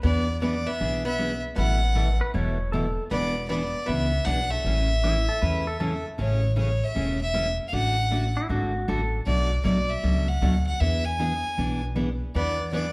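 Country western swing with a playful, swinging lilt, led by a clear, earthy bowed fiddle up front over a woody, thumpy pizzicato upright bass and a full-bodied picked dreadnought acoustic guitar. A dark, hollow-body archtop guitar adds a compressed second line until 6.0 seconds and returns briefly near the end, while a bright, twangy lap steel slides in with volume swells from 2.2 seconds. The band plays live in one room, bathed in a wet, large studio reverb, and the clip is cut from a longer piece.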